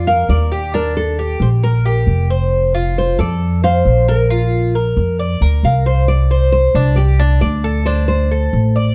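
A straight 4/4 pulse carries this relaxed Cuban son and guajira passage, cut from a longer piece. The upright bass sits up front and loudest, its pizzicato steel strings sounding woody, growly and thumpy in a low register. Above it, the Cuban tres plays picked arpeggios on doubled strings, some octave-doubled, with a metallic bite. The fingerpicked classical nylon-string guitar carries the melody, with finger squeaks audible and a plate reverb around it. The harmony moves through Bb, Ebmaj7 and F before returning to Bb, then shifts at 6.1 seconds into a new passage on Csus2 and D5. A moderate studio room and a dark, warm production round off the sound.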